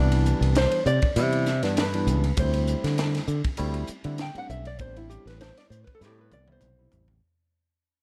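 A dark, intimate small-room sound frames this short cut from a longer electric jazz fusion piece, which fades out across its full length. At 99 BPM in 4/4 with a light sixteenth-note swing, the mood is funky and soaring, moving through Cmaj9, D7sus4 and Am11. A fingerpicked nylon-string guitar carries the soloing melody from 0.6 seconds, its woody tone from old strings given a slapback echo. Beneath it, a modern fingered electric bass sits bright and up front, while a barky tine electric piano, clean through a combo amp, comps softly with a phaser. A crisp acoustic drum kit with a high-tuned snare, punchy kick, hi-hat, ride and toms breathes in a pumping room, closing with a fill from 6.0 seconds.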